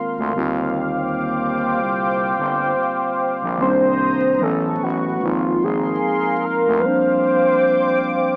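A velvety, chorused sawtooth synth lead with vibrato and portamento enters up front at 3.6 s over a hazy, melancholic lo-fi hip hop groove at 74 BPM with a swung 16th feel, where a mellow tine electric piano and a deep, detuned, dark analog pad with slow attack and long release carry chords from Ebmaj13 through Cm7, A69 and Ab69 to Bb69/F, a growling, thick FM bass sits beneath from 0.2 s until 6.8 s, and vinyl crackle, a small-speaker tone and moderate studio ambience frame this brief fragment of a longer piece.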